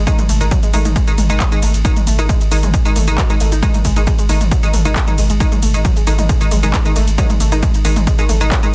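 Dense, heavily limited and wrapped in digital ambience, this cut from a longer dark, relentless peak-time techno track drives at 135 BPM in straight 4/4 over a G#5 chord: a punchy, up-front electronic kick and a tape-toned, small-room techno kit of handclaps, smooth hi-hats, ride, shaker and toms sit beside a thick, overdriven sub bass pumping on G#1 beneath a low-pass filter, while a warbling, lo-fi detuned pluck riff with 12-bit sampler grit, chorus, delay and sidechain pumping meets crisp, bright wavetable chord stabs that also pump and carry delay.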